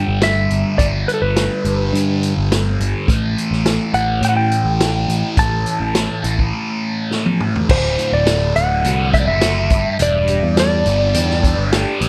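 A straight 4/4 pulse at 104 BPM drives this hazy, hypnotic stretch of psychedelic rock in D mixolydian, cut from a longer piece. A thick fuzz guitar, double-tracked and up front, grinds out the riff through distortion and a phaser, while a picked electric bass adds a growly, punchy low end from the very start. A vintage drum kit enters at 0.2 seconds with a punchy kick, a medium-tuned snare and dark cymbals, its rolled-off top sitting in a natural studio room. Above them, a clean lap steel guitar played with slide and fingerpicks carries the melody in a dark, compressed tone, trailed by analog delay. The harmony moves from G to A5 in the opening section, and a drum fill from 7.1 to 7.7 seconds leads into a second section that shifts between D and G. Light, small-room reverb gives the whole band a close, intimate sound.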